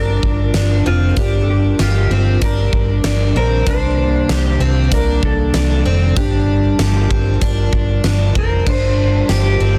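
Dream pop at 96 BPM in G minor, ethereal and hazy, where a clean, dark lap steel carries the slide melody through digital delay over a warbly, nostalgic lo-fi pad with chorus and slow attack, a shimmering octave-doubled twelve-string acoustic picking arpeggios through lush chorus and delay, a round, foam-muted vintage electric bass sitting up front, and a huge arena drum kit with a fat snare, punchy kick and bright cymbals entering at 0.2 s, all moving from Gm7 to Cm9 and back in a dense, heavily limited mix with light reverb, cut from a longer piece.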